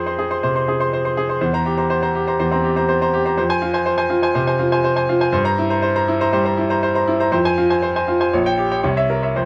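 A close, detailed recording with little reverb places a clear grand piano up front, its tone smooth and vintage, with a long sustain. This short piece is a virtuoso classical piano study in F minor, cut from a longer work. It moves at 122 BPM in 4/4 with a rubato feel, and the mood is agitated and passionate. The solo piano plays throughout the 9.5 seconds, ranging from Bb1 up to C6. The harmony swings between F minor and C7 chords, then gathers tension near the close, passing through a diminished chord to a C7b9 at 8.8 seconds.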